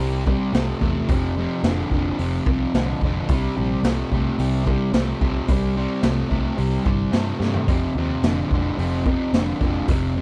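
Swaggering and gritty, this short cut from a longer blues rock power trio piece leans into southern rock, moving in a straight 4/4 feel. An up-front, double-tracked fuzz guitar drives the riff with picked, distorted tone, shifting through C, F5 and C5 chords in its low register. Beneath it, a vintage muted picked electric bass sits dark and round, its foam-muted, amped sound filling the bottom end. The raw garage drum kit enters at 0.3 seconds, bringing a boomy kick, a medium-tuned snare, hi-hat and toms, all saturated with a rolled-off top and a pumping small-room character. A drum fill lands at 7.4 seconds, just before the progression returns to F5, and the whole trio sits inside a small room ambience that keeps the sound close and rough.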